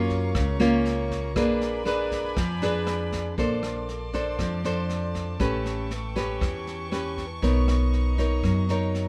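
Light reverb gives this short cut from a longer bossa nova piece a soft, airy sheen. At 119 BPM in a straight 4/4, the mood is relaxed and sunny, led by a fingerpicked nylon-string guitar up front: full-bodied, fresh-strung and classical in touch, with the occasional finger squeak. Beneath it, a woody, thumpy upright bass plucks gut strings, while a vintage brush drum kit with a punchy kick, rim clicks and a rolled-off top sits in a studio room. Behind them, a distant string section bows sul tasto chords with a soft attack, sounding pure and floating. The harmony moves from Gbmaj7 and Bb7b9 into a second section at 3.4 s that passes through Bbmaj9, A9 and Bmaj9.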